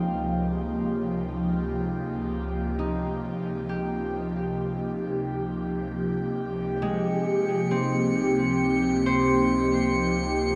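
A slow, straight 3/4 pulse at 67 BPM carries this peaceful ambient excerpt in Db lydian, where an airy, breathy pad sits up front holding sustained chords through chorus and phaser while a ringing, fingerpicked concert harp spins arpeggios into a diffuse delay. At 6.8 seconds the harmony moves from Ebadd9/Db to Db6 and a round, dark analog bass arrives on a low Db, followed at 7.1 seconds by a glassy, chorused texture of drifting overtones high in the register. The mix is soaked in a huge, dreamy reverb with an 8.6-second tail.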